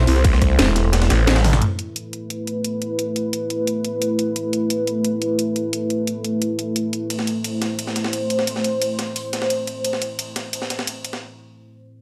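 Dark and mechanical, this 175 BPM technical drum and bass passage in A minor, cut from a longer piece, opens on a drop where a growling FM bass, a swirling phased saw bass with overdrive and a tight overdriven kick hit over a deep, moody analog pad pumping with chorus, then the basses fall away by 1.6 seconds, leaving the pad, a cracking overdriven drum and bass kit with bright hats and a gritty, pitched-up sampler breakbeat that returns at 7.1 seconds, all bathed in dreamy plate reverb before a brief break at 11.2 seconds.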